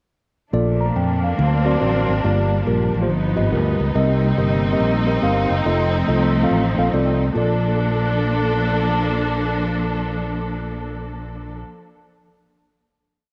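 Uplifting and jubilant, this short uptempo gospel piece swings in 4/4, with a mellow tine electric piano playing rhythmic drop2 chords and short fills over a punchy, amped fingered electric bass that walks and runs with slides and chromatic approach notes. A lush, up-front studio string section holds soft-attack bowed chords with vibrato and a smooth top, all set in an echo chamber reverb. After a breakdown from 0.5 seconds, the piece settles onto a final Bbmaj7 chord at 7.4 seconds.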